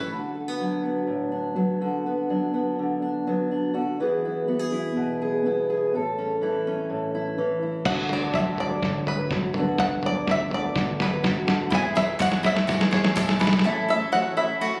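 This excerpt of warm, uplifting indie folk at 124 BPM in 4/4 opens with a brief flicker of twelve-string guitar, mandolin and electric bass before a fingerpicked steel-string acoustic guitar takes over up front, carrying the accompaniment alone through D6, Bm/D, E and A. At 7.9 seconds the arrangement begins to build: a bright, twangy banjo played with fingerpicks carries the melody up front, a round, dark electric bass settles in the background, and a lo-fi sampler-style drum kit with a thumpy kick and a muffled, pitched-down tone plays a fill. Around 11.7 seconds the steel-string guitar gives way as a shimmering, octave-doubled twelve-string returns in the background, alongside picked mandolin arpeggios on double strings. A jingly, distant tambourine and a hollow group handclap add brief touches of percussion, and the drums stop at 13.7 seconds for a short break that ends the clip. The whole sits in a moderate concert-hall reverb with compression, captured on a phone in the room.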